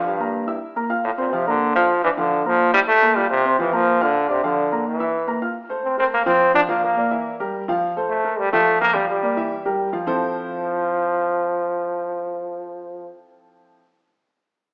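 A straight, danceable 4/4 pulse at 213 BPM drives this joyful Latin excerpt in F major, where a bright, punchy trombone with light vibrato and a vintage pop-style edge carries the melody up front from 0.1 seconds while a woody, polished upright piano accompanies throughout, the band heard live in one room through a stone-like reverb with a small-speaker sound, and chords moving from Bb through Gm13, Am and Edim to a closing Fmaj7 at 10.1 seconds.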